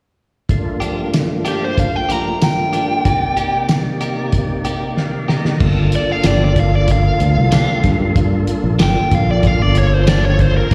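Straight-eighth soul blues with a mournful, brooding mood, heard as a live gig through the venue's PA in a recital-hall reverb, where a percussive tonewheel organ with key click, slow rotary speaker and light overdrive joins cloth-damped, thuddy drums with dark cymbals and a fat snare, a clean, scooped electric guitar adds compressed stabs, a biting overdriven lead guitar carries the melody from 1.5 seconds, and after organ and drum fills a round, punchy fingered bass enters at 5.6 seconds.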